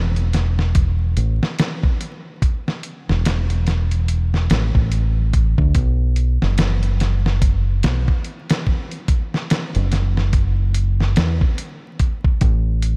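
Trip hop at a slow 72 BPM in 4/4, with a swung sixteenth-note feel and a smoky, dark mood, taken from a longer piece. A deep dub fingered electric bass opens at 0.0 seconds, sitting low between E1 and E2 with a round, punchy tone pushed through tube saturation and placed up front. At 0.2 seconds a dusty soul sampler-style drum kit joins with hi-hat, a thumpy kick and a fat snare, its compressed, gritty sound carrying a touch of small room reverb. Both parts sit up front through the single section until 13.0 seconds. The overall mix has light reverb and digital ambience, with vinyl crackle adding a worn, grainy surface to the sound.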